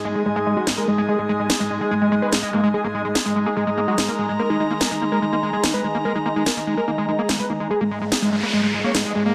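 A dense, heavily limited modern mix sits in moderate plate-reverb ambience on this hypnotic, psychedelic trance fragment at 145 BPM in a straight 4/4, cut from a longer piece. A thick, detuned unison sawtooth lead carries the melody with vibrato through phaser and delay, over a squelchy, gritty acid bass riff with a resonant filter sweep, distortion and delay, while an overtone-sweeping drone with chorus hangs in the background and an airy, breathy pad adds chorused texture. A cracking, tape-warm electronic snare sits up front from 0.7 s, and an electronic noise sweep enters at 8.0 s to close the passage.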